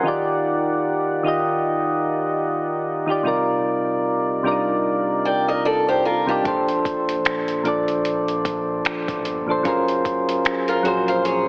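Soft, round electric-piano-like synth keys with a chorus shimmer open this smooth, romantic contemporary R&B excerpt in Bb major at 75 BPM with a swung 16th feel, joined at 5.3 seconds by a boxy picked acoustic archtop guitar playing arpeggios through digital delay, then at 6.5 seconds by a gritty sampler-style drum kit of finger snaps, hi-hat and thumpy kick alongside a mellow gliding synth bass in the background, all bathed in lush hall reverb and a heavily compressed AM-radio sound over chords moving from Ebmaj9 through Cm11 and Bbmaj9 to Gbmaj9#11.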